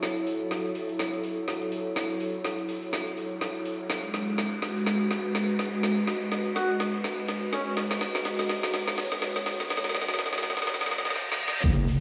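An aggressive, swaggering bass house build-up at 124 BPM with swung sixteenths opens on a filter-swept, overdriven garage kit fill of woody snare, metallic hats, crash and tambourine beneath an airy, detuned pad pumping over F#m then G#m, while a riser and reverse cymbal sit in the background, a veiled cup-muted trumpet with tape echo slips in at 6.6 s, and at 11.6 s an impact lands with a saturated wobble bass, a knocking driven kick and a barely audible natural hi-hat, the whole build bathed in a lush hall reverb.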